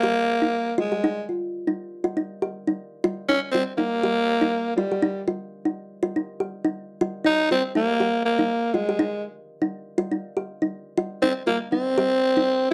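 A growling tenor saxophone, raspy and breathy with light vibrato and a slapback echo, carries a defiant, funky afrobeat melody up front in this short excerpt, while a woody, mellow kalimba plucks soft arpeggios over an Ebadd9 chord in a dry, close 1970s-style studio sound with light reverb.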